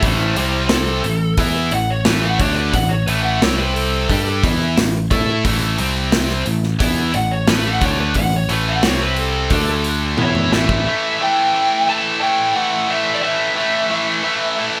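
A band playing live in one room comes through with light reverb, its punchy low end and gated drum sound setting a powerful, anthemic hard rock mood at 89 BPM in straight 4/4. A lead electric guitar, overdriven through a small cranked amp with slapback echo, carries a warm, picked solo for the first 10.9 seconds, ranging from E4 to A5 over chords that move between C5 and A5 before touching D5. Beneath it, a tight, double-tracked distorted guitar sits up front with a bright, picked riff, while a growly, punchy electric bass, recorded direct and amped, holds the bottom until 10.8 seconds. The gated 80s kit has a punchy kick, a medium-tuned snare, hi-hat and toms ringing in a stone-room ambience, and it closes with a drum fill from 10.2 to 10.9 seconds. After that the bass and drums drop out and the two guitars carry the closing section on an A5 chord until the clip is cut off at 14.8 seconds.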